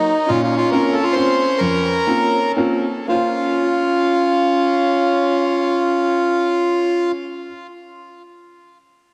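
Bittersweet and nostalgic, this short fragment of a musette waltz in 3/4 and Bb minor moves at 109-142 BPM, slowing from 0.3 to 3.1 s over a Bbmadd9 chord, as a reedy, dark, close-miked bandoneon with delay carries the melody up front, a warm, airy-bowed solo violin floats a soft second line beneath it, and a woody, vintage upright piano with short sustain and lush chorus accompanies until 7.5 s, all set in a wet hall reverb with a dreamy, cassette-tape haze.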